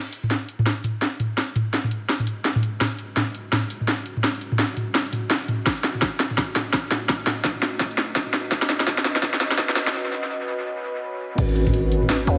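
An echo-heavy, high-passed mix in a moderate digital echo chamber frames this heavy, spacious half-time drum and bass excerpt at 168 BPM in G# phrygian. An overdriven drum kit with a cracking snare and bright hats sits up front with dub echo from the start. A dark, detuned sawtooth pad with chorus and sidechain pumping enters at 1.5 s, under a filter sweep through G#m7 and Aadd9. A knocking electronic kick, also with overdrive, joins at 5.7 s. After a drum fill and a break, the drop lands at 11.4 s with a growling, buzzy 808-style bass up front and a very quiet electronic impact.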